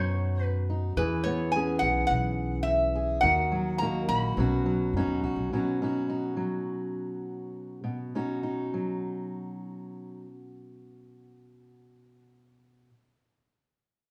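Acoustic folk for a duo or small band, gentle and pastoral, in B major at 105 BPM with an uneven pulse, cut from a longer piece. A nasal, metallic resonator slide guitar played with fingerpicks carries the melody up front until 5.2 s, while the woody pizzicato upright bass holds the low end to 5.5 s and a dark fingerpicked steel-string acoustic guitar continues alone to 12.9 s, moving through Badd9, E6 and D#m chords. The band plays live in one room with a large studio reverb, and the tempo slows from 5.5 s to 10.3 s.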